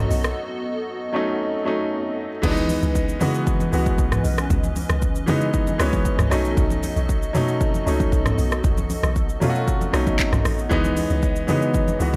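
A deep, round log drum bass with a dark, percussive FM bite anchors this hypnotic amapiano excerpt, joined by an intimate baby grand piano with audible action noise, a hollow, flute-like pad that warbles and pumps in the background, an up-front electronic kit of deep kick, crisp hats, handclaps, rim clicks, shaker, toms and crash, and bright, thin-skinned congas entering at 2.4 seconds, all moving between B7 and C#m9 under light reverb.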